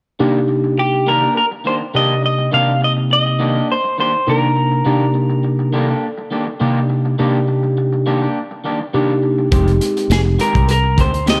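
A light reverb and small-room ambience frame this smoky, soulful excerpt of straight-eighth soul blues in C minor at 103 BPM, where a mellow tine electric piano with phaser holds down the harmony from 0.2 seconds, moving from Cm9 to Fm9, while a slightly broken-up, lo-fi guitar adds compressed stabs and a bright, twangy picked guitar carries the melody. At 9.5 seconds a round, foam-muted fingered bass and a crunchy, gritty breakbeat kit with a tight kick and rolled-off top come in up front, as the melody guitar returns at 10.1 seconds.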